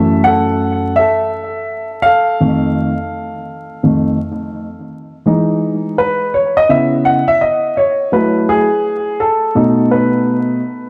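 A dark, mellow grand piano plays alone and up front through the full 10.9 seconds of this relaxed hip hop passage, its tone touched by analog delay and set in a moderate plate reverb. The tune sits in E major at 84 BPM in 4/4 with a swung sixteenth-note feel, moving from F#m7 and F7 into a second section at 5.3 seconds that runs through Emaj7, C#m7, F#m9 and B7. Vinyl crackle gives the warm, shadowy production a dusty finish, and the clip is cut from a longer piece.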